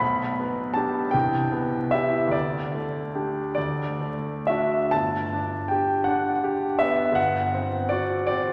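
A lilting 6/8 pulse, stretched and pulled by rubato, gives this romantic classical nocturne its unhurried sway. A solo grand piano carries the whole fragment, its tone clear and intimate, placed up front with the soft mechanical sounds of its action audible beneath the notes. The writing reaches from a low G1 up to B5, and the harmony drifts from G/B through Cmaj7 to a suspended Dsus4 that settles onto D around 3.6 seconds, then arrives home on G near 4.9 seconds before a final, unsettled chord. A wet concert hall reverb lets each sonority bloom and linger, while a vinyl crackle adds a worn patina. The mood is tender and nostalgic, and the 8.5-second passage feels lifted from a longer piece.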